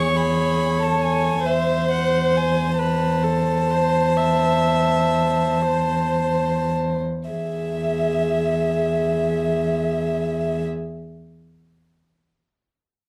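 Lyrical and tender, this slow romantic movement for string quartet in E major unfolds in a rubato 12/8 at 35-48 BPM, slowing through the first 7.3 seconds as the harmony moves from E to Am/E and back to E, with a sul tasto first violin carrying the melody on an airy bow and soft attack, a dark, woody second violin with a smooth top, an intimate viola in light vibrato beneath, and a close, up-front cello holding a low E2 bass, each part bowed by a single player in light reverb until the quartet stops around 10.7 seconds.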